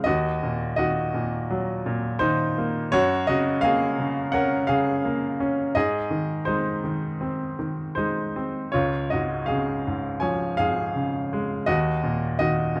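Tender and warm, this lyrical classical passage for solo piano unfolds with a rubato feel, cut from a longer piece and lasting 12.8 seconds. A bright, intimate baby grand sits up front, its short sustain and audible action noise giving the playing a close, polished presence as it moves through a progression from Ebm to Gbadd9, Ab and Db before returning to Ebm. Moderate studio reverb and a dark production surround the instrument.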